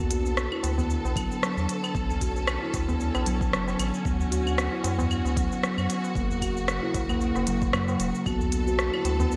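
Bright, 1980s-style digital production with a lush hall reverb frames this short, meditative organic downtempo cut in B minor at 114 BPM with a lightly swung 16th feel, where a vibrato-rich bowed string section pumps under sidechain on sustained chords moving from Bm7 through Dmaj7 and F#, a round, pure steel tongue drum struck with soft rubber mallets plays arpeggios through delay, a deep, nasal analog bass anchors the low end, an organic electronic kit of claves, smooth hats, rim click and shaker rides gated reverb alongside a low-tuned, dry tabla and a tape-warm electronic kick entering at 1.2 seconds, and a very quiet quartz singing bowl rings on F#4 from 8.3 seconds.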